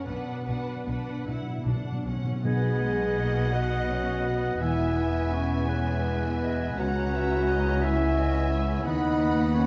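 Elegiac and solemn, this slow, rubato romantic orchestral passage in 6/8 carries a smooth, distant violin melody over lush second violins, expressive violas in the background, a punchy clarinet, ringing, very quiet harp arpeggios, mellow sustained French horn chords, focused, bowed cellos and smooth, even, bowed double basses. Hard-mallet timpani play a dry, articulate fill in the opening seconds before a pure flute, a warm oboe and a soft-attack bassoon join at 2.5 seconds, set in a dark, reverberant scoring-stage sound.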